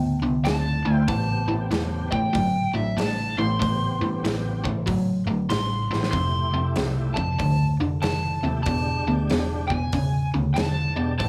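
Heavy and brooding, this swung blues rock and southern rock excerpt opens with a wah-drenched, overdriven lead guitar singing over a bright, double-tracked rhythm guitar riff and a dark, round foam-muted bass, with a big rock drum kit with a punchy kick joining at 0.5 seconds and a gritty tonewheel organ with key click and slow rotary speaker adding thick sustained chords from 0.9 seconds, as a drum fill at 5.8 seconds carries the Dm7, Am7 and Fmaj7 progression toward a tense E7#9, all set in light reverb.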